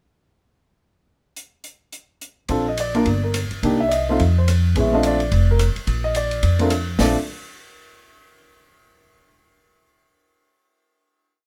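Jazz piano trio, playful and swinging: an airy small-room drum kit with dark cymbals, a boomy kick and a ride cymbal pattern plays alone from 1.4 seconds, then at 2.5 seconds an up-front grand piano states a bebop-style theme with syncopated comping and rootless voicings while a woody pizzicato upright bass plays in a two-feel beneath it, the brief piece touched by light reverb and closing on a final chord.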